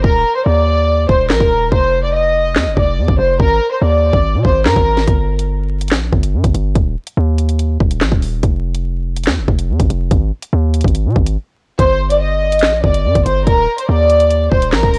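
A dry, gritty hardware sound with vinyl crackle frames this tense, ominous drill excerpt at 143 BPM in a half-time feel, where a reedy, gut-string violin section carries the melody through a low-pass filter and analog delay from 0.0 to 5.0 seconds and returns at 11.8 seconds, over a punchy, heavy 808-style bass and an up-front electronic drum kit of hard-clipped kick, sharp snare, bright hi-hats and handclaps.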